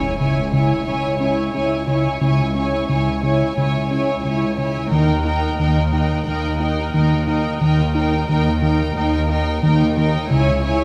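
A cinematic suspense score cut from a longer piece, eerie and uneasy, moving in a straight 4/4 over a brooding shift between C# minor and D# chords. Bowed string sections played sul tasto with light vibrato and soft attacks sit intimate and close: a dark, smooth-topped violin section carries the high melody while a rich second violin line and a warm viola accompaniment fill the middle. Beneath them, a background cello section and a double bass section hold the low bass line. The most prominent voice is a retro, glossy synth bass riff of pulse and sawtooth waves, its chorus and pulse-width modulation giving it an evolving, moving-notch shimmer over a fast attack. High above, a distant, woody, lush violin texture with vibrato hovers in the background. The piece opens on a band accent and a faint electronic impact that ends by 2.2 seconds, all set in a moderate scoring-stage reverb.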